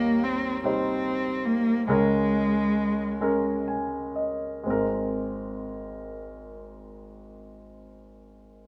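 Recorded live in one studio room, this short fragment carries a wet reverb that gives the close sound an intimate, heartfelt glow. It is an acoustic folk-pop ballad in Ab major and 6/8 with a straight feel, moving at a slow 39 to 50 beats per minute in dotted quarters and slowing down through the opening 4.7 seconds. A dark, bowed cello carries the melody, played by one player up front, expressive and close with vibrato and portamento in a range from Ab3 to C4, before falling silent at 3.6 seconds. A warm, polished grand piano provides the accompaniment, sitting present and up front across a span from Ab1 to Ab5 and continuing alone until 8.7 seconds. The harmony moves from Eb7 to Bbm7/Db and comes to rest on an Abadd9 as the second section begins.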